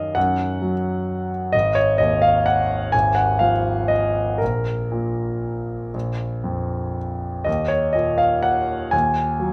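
A bright concert grand piano plays alone, up front and intimate, its deep bass and long sustain framed by light reverb, with its action noise audible. This nostalgic, bittersweet classical waltz in Eb minor moves in 3/4 with a rubato feel, its tempo drifting between 114 and 135 BPM. The passage is cut from a longer piece, spans about 9.5 seconds, and settles on Eb minor at 7.5 seconds.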